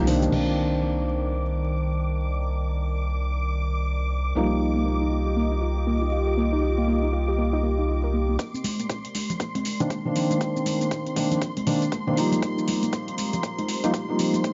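A swung 119 BPM deep house groove in C minor with a moody, late-night feel opens on a rubbery, bouncy square bass holding C2 under sidechain-pumped chords, felt-muted upright piano stabs and a vintage analog pad that shifts between Cm9 and Ebadd9 as a filter sweeps across it. A lo-fi, warbly pluck arpeggio slips in from the background at 4.4 seconds, while a silky string machine hangs high above with ensemble chorus. At 8.4 seconds the bass drops out as a deep, tape-warm kick and a kit of metallic, filtered hi-hats, shaker and crash cymbal arrive with warm background congas to start a build-up, the pluck now under its own filter sweep, all set in light reverb with vinyl crackle and a dusky, rolled-off top end.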